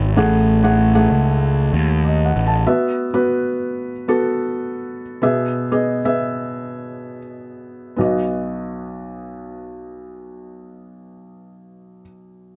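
Piano-driven pop in B mixolydian, this short excerpt from a longer piece feels hopeful and anthemic, moving in a straight 4/4 at roughly 82-96 BPM. A felt-muted upright piano carries the accompaniment throughout, its soft, mellow, intimate tone sitting up front and spanning from deep bass notes to bright upper register. A fuzz-drenched picked electric bass, overdriven and amped, joins it from the start, then drops out at 2.6 seconds, leaving the piano alone. Around 1.7 seconds the piano slips in a brief felt-toned fill, and from 2.7 seconds the tempo slows down through the rest of the opening section. The harmony moves from F#madd9/A to Bsus4 and E before settling on B as a new section begins at 8.0 seconds. Light reverb and a small room ambience give the sound a close, unadorned setting.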